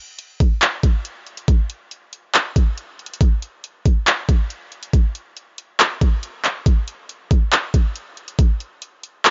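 This brooding, eerie hip hop fragment opens with an electronic trap drum kit that enters at 0.2 s and carries the whole passage through to 9.3 s. The beat sits in 4/4 with a heavy half-time feel, giving the groove a slow, menacing weight. A knocking kick anchors the pattern alongside handclaps and bright hi-hats, all pushed up front in the mix. Overdrive lends the kit a gritty, saturated edge that deepens the dark atmosphere. The sound is dry and close, with the top end rolled off above 7.5 kHz, and the passage is clearly lifted from a longer piece.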